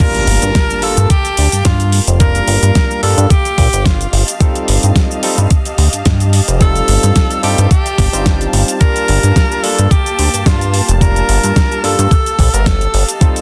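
A thumpy, sampler-style electronic kick sits up front at 109 BPM in 4/4 with a light 16th-note swing, joined by a fat, overdriven pop kit of snare, metallic hi-hat, cabasa and crash. This is a sleek, groovy nu-disco cut in G minor, moving from Gm9 to F9/G and back. A glossy, nasal chorused synth bass with tube saturation and a plucky, fast attack enters at 0.3 seconds and holds the low end prominently. A barky tine electric piano comps cleanly while a muted chamber string section, veiled and con sordino, pumps softly in the background. Over this, a bright, close-miked tenor saxophone carries the melody with vibrato and tape echo, and an electronic impact marks the opening drop and lasts until 2.2 seconds. The mix is dense and heavily limited, set in digital ambience.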